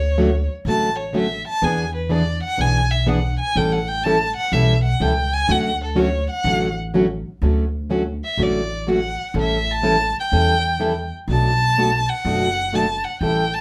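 Playful acoustic string swing in D major at 124 BPM, this short cut from a longer piece features an expressive bowed violin with vibrato and portamento that takes a solo through the first 7.4 seconds, carried by a woody pizzicato upright bass and a boxy, freshly strung picked steel-string acoustic guitar up front, all in a moderate club reverb.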